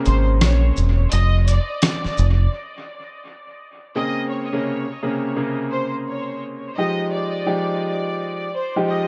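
An echo-heavy mix with light reverb frames this reflective, moody boom-bap hip-hop excerpt in B-flat minor, moving at 85 BPM in 4/4 with a swung 16th feel over Bbm9, Dm/F and Fm9 chords. A brilliant, vintage concert grand piano with cassette-tape colour carries the accompaniment up front, while an earthy bowed violin section with light vibrato and dub echo holds the melody in a high register. A round, punchy fingered electric bass and a gritty sampler-style kit with a fat snare, rim click, hi-hat and shaker drop out by 2.5 seconds, leaving piano and strings to carry the music on to 9.1 seconds.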